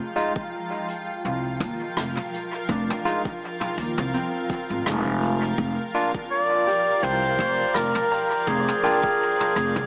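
A hazy, meditative ambient dub excerpt at 83 BPM in F dorian opens on a blurred granular cloud pad and mellow Celtic harp arpeggios with dub echo, soon joined by barky, lightly overdriven tine electric piano stabs, a brushed jazz kit of hi-hat, rim click and toms, and a deep overdriven electronic kick, before a woody pizzicato upright bass enters up front at 1.2 seconds and a classical-style clarinet takes the melody from 6.3 seconds over Fm7 shifting to Bb/F, the mix sitting in a moderate concert hall reverb with a small-speaker tone.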